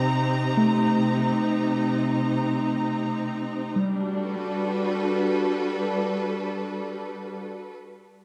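A rich studio string section opens this serene, luminous ambient fragment with lush, vibrato-laden sustained chords up front, joined at 0.6 s by muted, felt-like synth keys playing warbling, vintage-toned arpeggios through chorus and tape echo, as the harmony moves from Cm7 to Gmaj7 at 3.8 s inside a wet, lush hall reverb.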